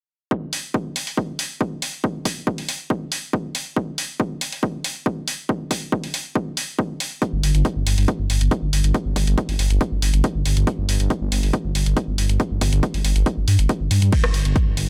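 Dry, this intense, industrial cut from a longer piece of driving peak-time techno runs at 139 BPM in straight 4/4, built on a heavy, layered, overdriven electronic kick that sits up front through a high-pass filter, joined by a punchy analog drum machine whose crash cymbal and hi-hat pump to the sidechain alongside a rim click, until a dark detuned saw bass enters at 7.3 seconds between G1 and G2, its deep, rumbling, beating unison tone sustained and pumping too.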